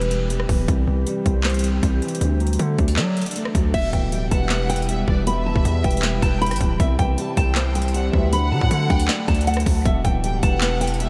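Brooding, hard-hitting trap with a half-time feel, cut from a longer piece. A boxy, worn grand piano with a subtle chorus and a low-pass filter carries the accompaniment throughout, while a glassy, ethereal FM pad holds slow-attack chords in the background, bathed in ensemble chorus and its own reverb. Up front, a saturated 808-style bass hits heavy with a fast attack and a noise layer, and an overdriven trap kit adds a hard-clipped kick, sharp snare, metallic hats, handclaps, rim clicks and crash cymbal. The opening break gives way at 3.7 seconds to a fingerpicked classical nylon-string guitar melody, filtered and delayed, with audible finger squeak. A lush studio violin section joins at 4.1 seconds with a vibrato-rich, bowed second line trailed by delay, all set in a small room with light reverb.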